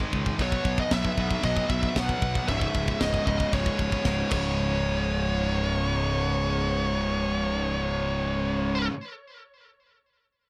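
Epic and dark, this heavy metal fragment opens on a pair of double-tracked picked rhythm guitars playing riffs, one bright and high-gain, the other a thicker fuzz tone sitting in the background. Beneath them a fingered electric bass adds a growly, punchy overdriven low end, while a tight acoustic kit with a high-tuned snare, tight kick, china and crash cymbals sounds gritty and saturated, with a rolled-off top. From 0.4 seconds a dark, up-front high-gain lead guitar carries the melody in a high register, trailed by digital delay over a harmony moving from B5 to C#5. A drum fill at 4.1 seconds leads into a new section, and the kit drops out at 4.4 seconds, leaving the guitars and bass to carry on. The mix is dry, with little reverb, and it is cut from a longer piece.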